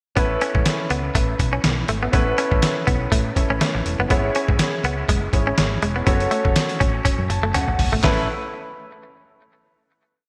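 Nostalgic and romantic, this brief 1980s-style pop piece in A major moves at 122 BPM with a light sixteenth-note swing, as a gritty, pitched-down trip hop sampler-style drum kit with a thumpy kick, handclaps and a big backbeat sits up front beside close-voiced held chords on an intimate concert grand piano, a growly syncopated pop-funk line on woody fretless electric bass, and a twangy muted single-note riff on clean, direct-recorded electric guitar bathed in lush chorus and delay, the whole set in a bright digital production with a wet hall reverb, before drum and piano fills at 7.1 seconds lead to a final Aadd9 chord at 8.0 seconds.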